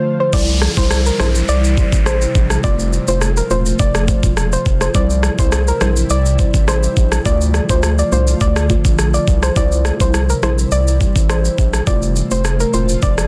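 A round, deep analog bass anchors this sunny, summery dancehall excerpt, alongside an up-front island pop drum kit with a knocking, overdriven kick, rim click, shaker and crash, a soft pluck melody carrying chorus and tape echo, dark detuned chord stabs with phaser and sidechain pumping, an ethereal airy pad sustaining chords in the background, and an electronic downlifter sweeping from 0.3 to 4.9 seconds, all within a dense, heavily limited modern master.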